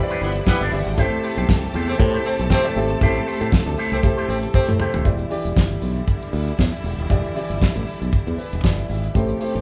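A 118 BPM disco groove in 4/4 with a light sixteenth-note swing drives this sultry, glamorous E minor excerpt, built on a dry, up-front 70s drum kit with a fat snare and tight kick and a bright, growly fingered electric bass over Em7 and Am7. An intimate grand piano, its action noise audible, and a close, clear string section holding sustained chords run throughout. Tight horn stabs with octave doubling, a dark, clean envelope-filtered guitar and a lush violin section in the background fill the opening, then fall away around a drum fill at 4.5 seconds. From there, drums and bass carry on with the piano and strings, the piano adding a fill at 8.1 seconds, all heard as a band playing live in one large studio room with moderate reverb.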